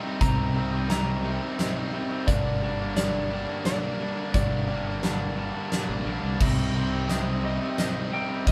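A big rock drum kit sits up front in this brooding, cinematic post-rock passage, its fat snare, tight kick and bright cymbals arriving at 0.2 seconds alongside a growling, overdriven fingered bass. Moving at 87 BPM in a straight 3/4 in C minor, the music is cut from a longer piece and cycles through Cm7, Gm and back to Cm7. A dark, clean lap steel guitar carries the slide melody over a wall of picked guitars: a crunchy overdriven riff joined by a compressed fuzz guitar playing its own riff, with a very quiet, lo-fi guitar through a small old amp playing arpeggios underneath. A clear studio string section holds sustained, bowed chords with vibrato, barely audible beneath the band. At 6.4 seconds a soft glockenspiel played with rubber mallets adds mellow, bell-like arpeggios in the background. The whole band plays live in one room with moderate small-room reverb.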